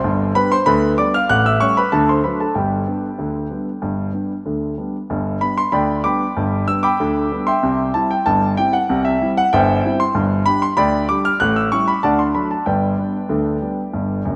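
A grand piano carries this cheerful, jaunty ragtime piece alone, its tone polished and present, with a long sustain, and it sits up front in the mix. The tempo is 95 BPM in a straight 2/4, in G major, and the playing ranges from deep bass notes up into the high treble. The harmony moves from G through A7 and D back to G, then turns toward C before returning through G, A7 and D to land on G. The same section is played twice, with the second pass beginning at 5.1 seconds and running to 14.4 seconds. A lush hall reverb with a moderate presence surrounds the piano, though the overall mix has the rough character of a home demo, and the recording is a short piece cut from a longer performance.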